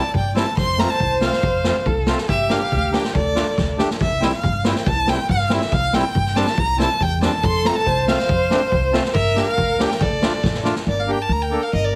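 Festive yet bittersweet, this klezmer excerpt in 2/4 sets a focused, vibrato-laden lead violin up front over a soft-attack second violin with expressive portamento that drops out from 3.8 to 7.4 seconds, reedy, hollow accordion accompaniment, woody, thumpy pizzicato upright bass and a boomy, rolled-off street-band drum kit with fills at 3.6 seconds and again later, the whole mix pressed into a heavily compressed radio sound with moderate studio reverb.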